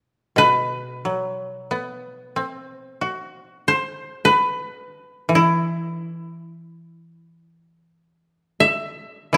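In free time, this austere, meditative passage of Japanese chamber music, tuned to A4 = 444 Hz, is cut from a longer piece. Two kotos plucked with fingerpicks enter together at 0.4 s and play until 9.4 s: one carries the melody between E4 and E5, while the other, set lower in the mix, supplies accompaniment from B2 to F#4. Both instruments sound woody, dry and up front, framed by a moderate scoring-stage reverb.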